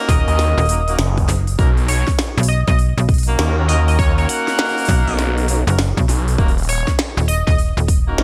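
Glitch hop at 100 BPM with a swung sixteenth-note feel, funky and gritty, moving from Ebm7 to Bmaj7 and back to Ebm7 in this short cut from a longer piece. A mellow, tight horn section plays octave-doubled stabs with sidechain pumping and digital delay, while an edgy, tearing sync lead carries the melody with chorus and vibrato. Below them, a snappy FM bass with a metallic attack and a swirling, thick phased saw bass sit up front over a punchy layered kick and a glitchy kit of tiny snare and clicky hats, all framed by light digital ambience and bright 1980s-style production.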